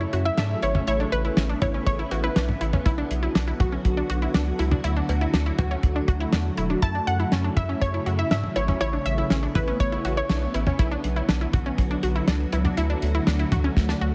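Driving yet melancholic, this synth-pop excerpt moves at 121 BPM in 4/4 over a F#m7, Aadd9, Bm and D progression, carried by a round, deep analog bass and a dry, damped 70s drum kit with a fat snare, tight kick, cowbell and toms, both sitting up front. A silky string machine holds mellow sustained chords through phaser and ensemble chorus, while a lush, bright unison pluck spins tape-echoed arpeggios. A warbling, detuned analog pluck adds a chorused second line around 0.3 seconds and again from 6.8 seconds, and a drum fill at 13.8 seconds closes a heavily compressed, radio-style mix in a light studio reverb.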